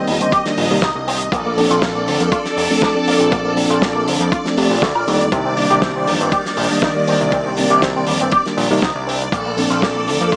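A straight 4/4 groove at 120 BPM from a gritty, thumpy electronic kick and a dry, damped 70s kit with hi-hat and a fat snare drives this groovy, sleek nu-disco excerpt in C dorian. A thick, detuned analog bass is pushed through tube saturation, a twangy, bright envelope-filtered electric guitar riff carries analog chorus and delay, and a mellow tine electric piano with analog delay pumps under sidechain beside a lush vintage string machine soaked in phaser and ensemble chorus. Everything sits in light studio reverb with a small-speaker sound as the chords move between Cm9 and Bbmaj7.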